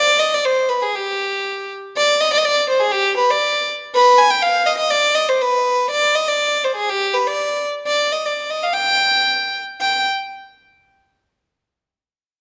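Klezmer in 2/4 at 122 BPM, cut from a longer piece, with a bittersweet yet festive mood in G phrygian dominant. A single violin plays alone and up front from 0.0 to 10.0 seconds, its bowed line pure and floating with a soft attack and an airy bow, moving between G4 and Ab5. The tempo speeds up across the passage, and a moderate recital hall reverb gives the solo a sense of space.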